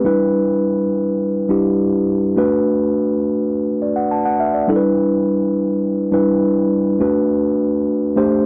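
A mellow tine electric piano plays alone and up front, its clean tone heard through its built-in speakers as it moves between Em7 and Bm7 across a range from G3 to A5, adding a fill at 8.2 seconds. This smooth, lush soul fragment sits at 103 BPM in a straight 4/4. Light reverb colors a dry, close recording with a 1970s studio character.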